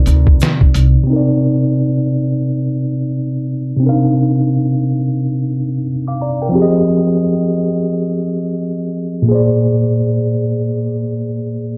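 Dark, low-pass-filtered production in a wet small room opens this reflective, nostalgic lo-fi hip hop excerpt at 88 BPM in C minor with swung 16ths, where a woody pizzicato upright bass, compressed, pitched-down sampler drums and a grainy egg shaker in the background all stop at 0.9 s, leaving a worn, slightly out-of-tune, lightly overdriven tine electric piano with cassette-tape colour alone over Cm11, Fm7 and Bb9 beneath a filter sweep that runs from 1.1 s to the cut at 11.8 s.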